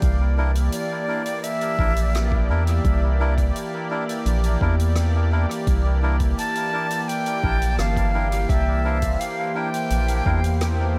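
Light reverb gives this peaceful, spacious ambient dub excerpt an open sound as it moves at 85 BPM in 4/4 over a C9 chord in C mixolydian. A round, deep analog bass sits up front beneath a smooth, detuned sawtooth pad with chorus and vintage 12-bit sampler grit, while a muffled, pitched-down electronic kick thumps in the background and a soft-mallet kit with a natural hall character adds hi-hat and rim clicks through studio reverb and dub echo. A nasal, boxy melodica plays stabs from 0.4 seconds, and a breathy, bright concert flute with vibrato and a crisp attack carries the melody from 0.7 seconds, both trailing dub echo.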